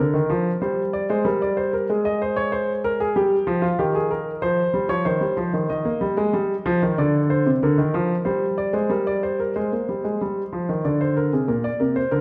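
A concert grand piano plays alone throughout this joyful, stately baroque-style two-part invention, set in a straight 3/4 at 94 BPM and tuned to A4 = 441 Hz, its intimate, up-front tone carrying deep bass, long sustain and audible action noise across a range from Bb2 to Eb5. Harmonies such as Bb7/D, Gmadd11, Eb69 and Csus2 move through the opening passage, and a new section begins at 9.6 s with a rootless Fm followed by a Bb9. A recital hall's wet reverb, ringing for 1.6 s, surrounds this short fragment of a longer piece.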